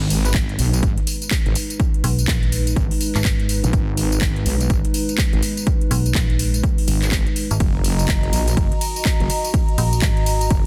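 Up front and wobbling, a heavy, detuned sawtooth bass with chorus, overdrive and sidechain pumping drives this bouncy, swaggering bass house excerpt at 124 BPM in G# minor. From the start it sits alongside a moody, ring-modulated analog pad holding sustained chords from G#m to F#6. It is soon joined by a punchy overdriven electronic kick, a house kit of handclaps, metallic hats, ride and tambourine, and a decaying FM bass that enters at 2.0 s, all in a dense, heavily limited, dry mix.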